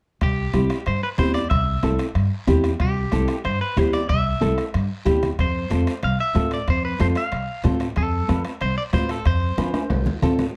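A joyful, danceable cumbia at 186 BPM opens at 0.2 s with a twangy clean electric guitar melody bathed in spring reverb and slapback echo, over woody pizzicato upright bass up front, a soft-beater bombo, and background congas, raspy guiro and ringing timbales. A full-bodied, fingerpicked nylon-string guitar joins up front at 0.5 s, playing accompaniment as the harmony moves from C to F at 5.4 s in a dark, lightly reverberant production. A drum fill arrives at 9.6 s just before this excerpt is cut from the longer piece.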